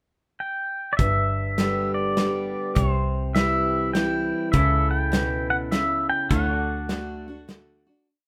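Honky-tonk and classic country in an easygoing, nostalgic waltz, this short whole piece opens with a clean, fingerpicked pedal steel playing a motif-based melody of call phrases from a pickup bar, using volume swells and slide. At 1.0 seconds a bright, full-bodied dreadnought acoustic guitar joins with alternating bass and strum plus bass runs. Alongside it come a dark, round, foam-muted vintage electric bass on root and fifth, and a small-room acoustic drum kit with a punchy kick and medium-tuned snare in a swung 3/4 groove. The harmony moves from G to C, and a second, twangy pedal steel adds gliding sustained chords from 4.5 seconds as the changes continue through A7/C# and D, all within a moderate reverb, and the piece fades out from 6.3 seconds.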